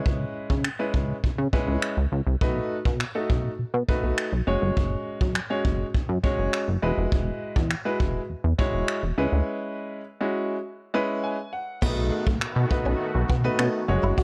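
A straight 4/4 pulse at 102 BPM drives this bittersweet yet confident dance-pop excerpt, set on a vintage brush drum kit whose tight kick, hi-hat, finger snaps and dark crash cymbal sound distant and roomy despite sitting up front. A plucky analog bass, punchy and funky with a fast-attack filter pluck and a ring-modulated edge, pumps against the sidechain alongside a clear, intimate concert grand piano whose audible action noise and deep low end carry the chords, moving from C#m7 through B7, F#sus2 and Eadd9. A break arrives at 9.5 seconds, and the piano plays a short fill at 10.9 seconds. At 11.8 seconds the music shifts onto B7 as a soft-attack, detuned supersaw swell enters in the background, pumping with the sidechain, together with a bright, compressed clean electric guitar riff coloured by ensemble chorus. A small-room ambience and light reverb surround the mix, and a worn cassette-tape warble with drifting pitch gives the whole recording a nostalgic haze.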